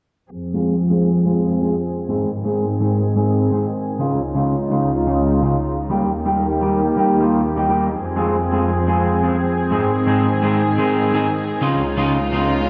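A dark studio string section anchors this euphoric, anthemic EDM excerpt in F minor at 126 BPM, holding sustained bowed chords with a reedy, gut-string tone and light vibrato that sit up front yet feel distant, with a low-pass filter sweep running across the strings from 0.3 to 12.7 seconds. Alongside them, a picked electric guitar at the edge of break-up, also up front, plays accompaniment with a slightly broken-up edge, colored by spring reverb and dub echo. The harmony cycles through Fm, Ab, Dbadd9 and Eb in a steady 4/4 with a straight feel. A very quiet electronic riser slips in at 12.2 seconds, just before the passage ends. The production is dark and low-pass filtered, set in a huge ambient reverb with a long tail.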